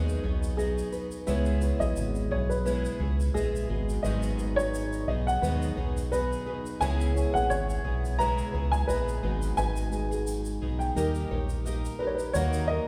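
At 87 BPM in 4/4, this tender, wistful acoustic pop cut moves with a gentle sixteenth-note swing in G# minor, shifting mostly between G#m7 and C#m7 before touching D# and then D#m near the end. A dark upright piano carries the melody with a woody, slightly detuned tone and short sustain, while a round, direct fingered electric bass sits up front underneath. A picked twelve-string acoustic guitar adds shimmering, octave-doubled accompaniment, complete with finger squeak, and a fingerpicked nylon-string guitar with old strings plays full-bodied, deep classical arpeggios in the background. From 1.3 seconds a felt-muted upright piano joins softly behind them, intimate and thick with felt and audible action noise, and a grainy tube shaker keeps a mellow pulse throughout. A wet church reverb with a 3.0-second decay wraps the whole performance in the space of a large hall.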